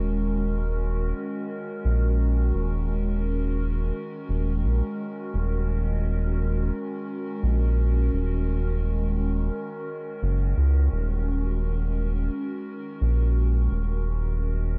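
A swung 16th-note feel at 86 BPM in 4/4 sets a slow, spacious pulse for this deep ambient dub fragment in Eb minor, resting on a single Ebm7 chord across its 14.8 seconds. A round analog bass sits up front with dark, tube-saturated low notes and an evolving, ring-modulated tone. Behind it, a warbling, detuned tape-like pad holds nostalgic, lo-fi sustained chords, softened by chorus, phaser and its own reverb inside a dusky digital ambience.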